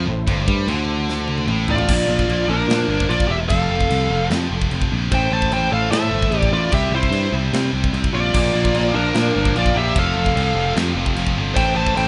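Opening on scooped, distorted rhythm guitars, a growly, up-front picked bass and a very quiet, distant bowed chamber string section holding dark sustained chords, this aggressive, epic heavy metal excerpt at 149 BPM brings in a tight, polished drum kit with bright china and crash cymbals and a drum fill before two distorted lead guitars with delay enter at 1.7 seconds, one carrying a bright high melody over a second, warmer line, while a background rhythm guitar drops away at 1.9 seconds and returns at 8.3 seconds across an Am, Bb, F and C progression, all in a rough home demo mix with small room ambience and a dulled top end.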